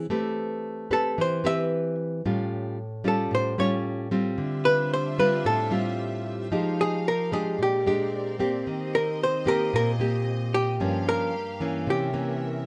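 A miked, amplified archtop guitar carries a clean, compressed hollow-body melody up front from 0.9 seconds in this sunny, romantic bossa nova excerpt at 112 BPM, over fingerpicked nylon-string guitar with audible finger squeak, while a soft-attack studio string section bowing sul tasto with light vibrato adds sustained chords from 4.4 seconds, all in light reverb as the harmony moves from Am9 through Dm11 and Eb6 to C7b9.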